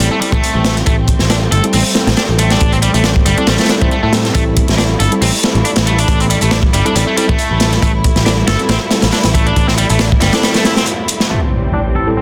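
A swaggering, funky breakbeat groove in A minor at 138 BPM, with lightly swung sixteenths, opens on an Am7 with a crunchy, saturated breakbeat kit up front, a growly, foam-muted picked bass, a bright overdriven guitar riff with delay, and worn, slightly out-of-tune tine electric piano stabs, while a smooth string section holds sustained chords in the background with sidechain pumping and a tape-warm electronic hi-hat sits behind the kit. The bass drops out at 10.3 seconds and the drums at 11.3 seconds, when an electronic impact hits prominently to close the excerpt at 12.2 seconds. The mix has light small-room reverb and a dense, heavily limited modern sound.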